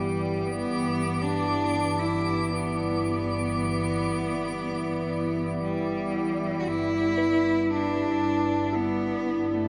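Ambient piece in G major at a slow 58 BPM, luminous and warm, where a rich, bowed solo cello carries the melody with vibrato and delay over a smooth sawtooth analog pad holding sustained chords with chorus, a dark, woody double bass section anchoring G1, and a twinkling granular texture with octave-up shimmer until 6.7 s, after which a pure FM synth bell plays soft arpeggios with chorus and delay from 7.2 s, all bathed in a long cathedral reverb in this short excerpt cut from a longer piece.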